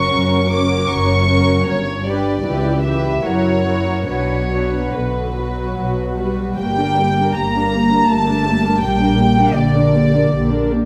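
In a rubato 3/4 at 70-83 BPM, this elegiac, solemn slow romantic movement for string orchestra, cut from a longer piece, sets a pure, floating violin melody reaching up to D6 over a soft-attacked second violin line, lush woody violas, intimate cellos and distant double basses, all bowed sul tasto in a wet recital-hall reverb, as the harmony turns from B minor to G minor at 6.6 s.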